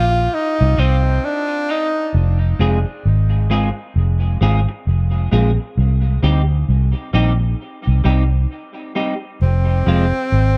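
Spacious and deep, this short reggae excerpt in C minor moves at 66 BPM with a swung sixteenth feel, as a dark, round, foam-muted electric bass sits punchy and up front throughout. A clean, hollow-bodied semi-hollow electric guitar colored by analog chorus and dub echo plays accompaniment until 10.1 seconds, and a clear tenor saxophone with light vibrato and a smooth top voices brief melodic phrases soaked in dub echo at the start and again from 9.4 seconds, all over Cm and Fm chords in an echo-heavy mix with light reverb and studio ambience.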